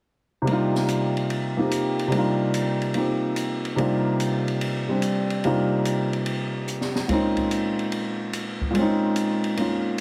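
Modal jazz with a hypnotic, cool mood, swinging at 145 BPM in 4/4 and set in C minor, cut from a longer piece. A warm baby grand piano with short sustain sits up front playing accompaniment from 0.4 seconds, moving from Cm11 to Bbm11 at 7.1 seconds, while an open acoustic jazz kit with dark cymbals, a high-tuned snare and a boomy kick works hi-hat, ride, snare and kick lower in the balance, adding a fill at 6.7 seconds. The sound has a moderate studio reverb and a heavily compressed, radio-like character.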